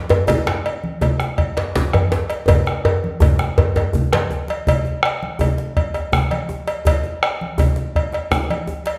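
A tight, cracking djembe played with soft hands sits up front in this festive, powerful West African drum ensemble, carrying the excerpt until it stops at 4.3 seconds. A second djembe, played with hard hands and buzzing with metal rattles, sounds close and dry, while medium-tuned congas add a warm, thick-skinned voice. A round bombo sits forward in the mix beneath them, and a metallic cowbell rings with a small-room character. The traditional groove moves in a straight 12/8 at 110 dotted-quarter beats per minute, with a drum fill from 2.5 seconds before the same section repeats at 4.7 seconds. The ensemble is bathed in the wet reverb of a recital hall or church, in a short passage cut from a longer piece.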